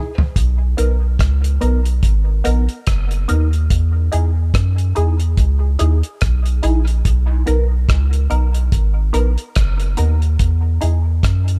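A laid-back dub reggae groove in 4/4 at 72 BPM, swung on the sixteenths, opens with a brief drum fill before the soft dub sub bass enters at 0.4 seconds. The cloth-damped drum kit sits up front with a thuddy, dry, dark character: a tight kick, rim clicks, toms and a hi-hat, with a rolled-off top keeping the whole kit smooth. The sub bass is deep and round, blending triangle and square waves with a fast attack and sustained notes. Above it, a filtered dub chord stab of muted, detuned sawtooth tone plucks short chords through phaser and dub echo, dropping out at 11.0 seconds. The hazy mood in B major rests on a slow alternation of Bmaj7 and Emaj7, all heard in a small room, in this excerpt cut from a longer piece.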